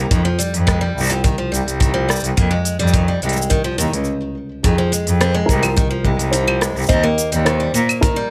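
Folktronica in F minor at 106 BPM, this intimate, autumnal excerpt pairs a boxy parlour steel-string guitar picking arpeggios with finger squeak, plate reverb and a biting, bowed cello bass, a punchy kick with pumping room sound, and a tape-warm electronic kit of claves, smooth hi-hat, rim click and shaker, all halting in a stop at 4.1 seconds before a muted, thick-felt upright piano melody with plate reverb enters at 4.6 seconds over chords moving from F7sus2 to Fm7 and Eb6.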